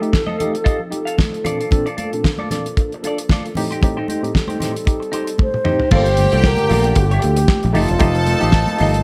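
A sultry, glamorous disco groove with a lightly swung sixteenth-note feel, cut from a longer piece. A dry, up-front 70s drum kit with a fat snare and tight kick drives it from the start, backed by high-tuned congas in the background, while a tine electric piano through a combo amp, worn and slightly out of tune with medium tremolo, and a twangy, compressed clean guitar with phaser fill out the harmony over F7, Bbmaj7 and Am7b5. A dark, vintage French horn section holds sustained chords in the background, and an airy wooden-headed alto flute with soft attack and unsteady vibrato sings a short melody at the opening before returning at 5.4 seconds. A drum fill leads into the second section at 5.9 seconds, where a round, punchy fingered electric bass enters up front, a clear, biting string section adds a second line with light vibrato, and a distant, roomy horn section punctuates with loose stabs over Gm7 and F7. 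The whole sits in light reverb and studio ambience.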